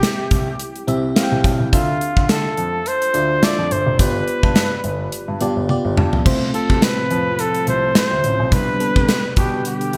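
A lightly swung sixteenth-note groove at 106 BPM in 4/4 drives this uplifting, romantic 1980s-style pop passage, cut from a longer piece, with a gated drum kit up front: tight kick, medium-tuned snare, bright cymbals and toms in an airy stone room. A clear, vibrato-laden flugelhorn carries the melody through a delay, over glassy, bell-like FM electric piano chords with chorus and a grand piano holding down the bass, moving through C, Dmadd9 and G7. After a drum fill at 5.7 seconds, a lush, vintage string machine with ensemble chorus swells in beneath the harmony at 6.3 seconds as the chords shift to F and G, all set in a moderate plate reverb with bright, polished digital production.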